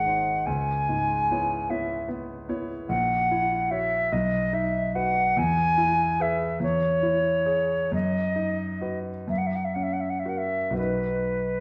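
Set in a moderate recital hall reverb with a dark, warm production, this short passage cut from a longer romantic classical piece sounds tender and warm. A silver concert flute carries the melody from start to finish, its pure, straight tone and crisp attack sitting up front with an expressive line between B4 and G#5. Beneath it, a grand piano provides the accompaniment across the full 11.6 seconds, its clear, intimate sound reaching from deep G#1 up to C#5, with the natural action noise of the instrument audible. The music moves slowly in 6/8, at 39 to 52 BPM counted in dotted quarters, with a free, rubato feel. In B major and tuned to A4 = 445 Hz, the harmony drifts from C#m7 through F#7/A# and E before settling through F# onto a closing B chord at 10.8 seconds.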